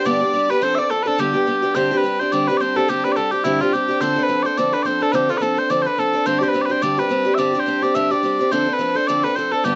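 A swung Celtic reel races along at 213 BPM in 4/4, cheerful and bright in G mixolydian, with the chords moving from G and F6 to alternating Gsus4 and Dm7 once the second section arrives at 1.8 seconds. Mellow, sweet small bagpipes carry the melody up front with vibrato, while a boxy, picked acoustic archtop guitar picks out the accompaniment just as prominently beneath them. A single bowed fiddle, rich and smooth with light vibrato and a touch of tape echo, adds a soft second line in the background only until 1.6 seconds, all set in light reverb with a rounded, softened top end.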